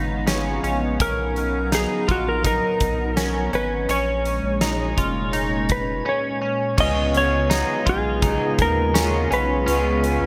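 Dream pop with a blissful, dreamy glow, this excerpt pairs a dark, sliding lap steel melody with bright, twangy clean-guitar arpeggios, a swirling vintage pad, a thick saturated sub bass, a very quiet glassy shimmer and a huge arena drum kit with a punchy kick and fat snare, before a slightly broken-up electric guitar with harmonic tremolo slips in behind at 6.8 seconds.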